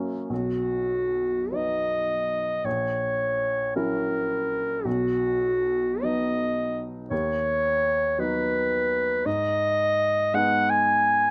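A grand piano opens this fragment of a Romantic duo, its open, long-sustaining tone settling in just before the clarinet takes up the melody at 0.3 seconds. Set in 6/8 with a free, rubato feel, the music carries a melancholic, elegiac mood that lingers throughout. The clarinet sits up front in a classical style, its smooth upper register carrying the solo line between F#4 and G#5, while the piano supports it from below with a warm accompaniment reaching down to A#1. The harmony moves from B through F#7/A# and back to B, then on to B/D# and G#m. Close, detailed microphones and a light reverb give the pair an intimate presence until both stop together at 11.3 seconds.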